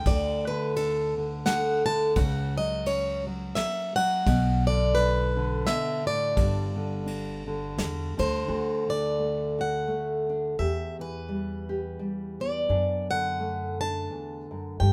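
Acoustic folk in a gentle, hopeful 3/4 at 86 BPM in D major, swinging lightly, with a picked, boxy swing-style acoustic guitar carrying the melody up front over bright, fingerpicked nylon-string accompaniment and a woody, growly pizzicato upright bass. Soft brush drums with a punchy kick, snare and ride play until 8.3 s, after which the guitars and bass carry on alone as the chords move from D through Bm and G to Em and a closing E9sus4. Light reverb surrounds the ensemble in this short cut from a longer piece.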